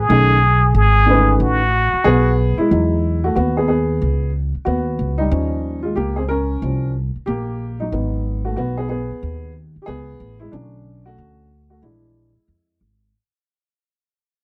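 Smooth and warm, this jazz-hop excerpt in E major moves at 92 BPM with a swung 4/4 feel, opening on an intimate, breathy trumpet melody whose plunger mute brings a wah-wah colour and vibrato before it drops out at 2.4 seconds. Pizzicato upright bass, woody and up front, anchors the harmony while the dark upright piano, mellow with short sustain, accompanies and then takes a solo from 2.7 seconds as the track fades out over chords such as Emaj9, D#7 and G#m7. A moderate small-room reverb surrounds the dark, warm production.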